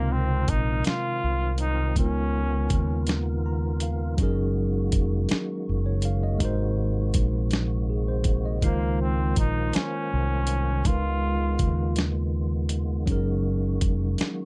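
Tender and intimate, this slow six-eight R&B fragment drifts over lush extended chords, with a breathy, whispered flugelhorn carrying the melody in two short phrases, the second arriving at 8.6 seconds, touched by slapback echo and plate reverb. A clean tine electric piano accompanies throughout and slips in a brief fill at 3.1 seconds, while a lightly overdriven tonewheel organ with key click, chorus vibrato and slow rotary speaker holds sustained chords in the background. Up front, a round fretless electric bass with analog chorus sits alongside a gritty, compressed sampler-style drum kit of thumpy kick, snare and hi-hat that enters at 0.5 seconds, inside a dark, close-sounding mix.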